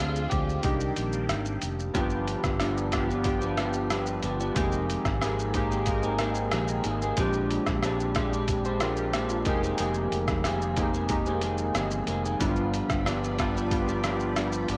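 A clean electric guitar solo opens this hazy, lonely slice of indie and bedroom pop, taken from a longer piece, with phased string-machine chords swirling in the background until 1.9 seconds. The guitar runs through a small old amp, sounding slightly broken-up and compressed under analog chorus and vibrato, beside glossy, chorused retro synth keys whose pulse and sawtooth tones carry a filter sweep and tremolo. A gritty, pitched-down sampler-style drum kit enters at 0.2 seconds and sits up front with a thumpy kick, rim clicks, hi-hat and shaker, while a round, punchy fingered bass holds the low end. The harmony drifts through dusky seventh and extended chords such as Fm11 and Bb13, and the vintage, warbling strings return at 12.4 seconds on a G7. Moderate spring reverb and digital ambience wrap the mix in a hazy atmosphere.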